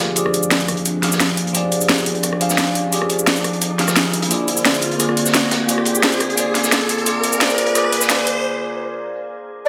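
Soulful and dreamy, this liquid drum and bass passage, cut from a longer piece, is a build-up over a straight four-beat pulse, with the harmony moving from Fm69 to Bb9. A bell-like tine electric piano sits up front with a bright, clean tone, colored by phaser and digital delay, while a glassy FM pad with ensemble chorus hovers ethereally in the background. Two drum kits are layered: an overdriven electronic kit with a cracking snare, bright hats, rim click and cabasa sits forward, and a gritty acoustic breakbeat kit with a rolled-off top rests behind it, while a very quiet, deep detuned saw bass rumbles underneath. An electronic riser runs from 1.5 s until it drops out with the drums and bass at 8.4 s for a short break, and a lush hall reverb lends the mix space. At 9.7 s a distant, airy jazz flute arrives up front on a single expressive note with vibrato.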